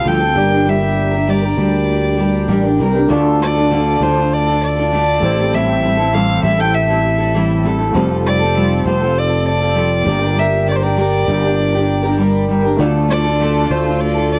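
This reflective, wistful acoustic pop piece, cut from a longer work, has the intimate character of a home recording on cassette, set in a studio ambience. A single bowed violin carries the melody up front, played sul tasto with a soft attack and light vibrato, its warm, close tone colored by cassette tape. Beside it, a double-tracked steel-string acoustic guitar is picked with an auditorium-like resonance, while a fretless electric bass, entering at 0.1 s, sounds growly and punchy through an ensemble chorus. Very quiet underneath, an overdriven reed electric piano adds a gritty, reedy texture through a combo amp. At 12.8 s a clear studio string section floats in the background with pure, sustained chords as the harmony returns to Dm.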